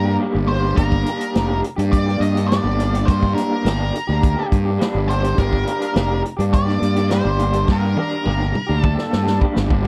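This dry, close recording has the feel of a 1970s studio and captures a short cut from a longer psychedelic rock piece with a hypnotic, mysterious mood. A fingered electric bass sits up front with a round, overdriven fuzz tone. An electric guitar through a small old amp plays the riff with a slightly broken-up, lo-fi sound, double-tracked and treated with tremolo. Above them, an octave-fuzz lead guitar carries a dark, picked melody through wah, distortion and slapback echo until 9.4 seconds. A vintage acoustic drum kit joins at 0.8 seconds with a punchy kick, a medium-tuned snare, hi-hat and toms, its top end rolled off in a natural small-room sound, and it plays a fill from 7.7 seconds to the end.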